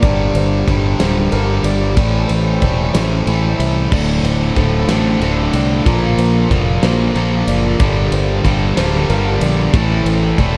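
A dark, small-room sound frames this cinematic, melancholic post-rock excerpt, moving at 62 BPM in a slow 6/8 with a straight feel. At its base, a growling fingered electric bass, overdriven and up front, carries the low end, while a cranked stack guitar plays a bright, picked, overdriven riff near the front of the mix. A big rock drum kit sets the pulse with a fat snare, punchy kick, crash and ride cymbals, its top rolled off in a big-room sound. Deeper in the background, a felt-muted upright piano plays mellow, intimate arpeggios with audible action noise and a digital delay, and a very quiet hand-pumped harmonium breathes reedy, nasal sustained chords far down in the mix. At 3.9 s a second overdriven stack guitar joins the riff further back, thickening the texture as the harmony moves through Gm7, Am7, Dm7 and Bbmaj7 before returning to Gm7 and Am7.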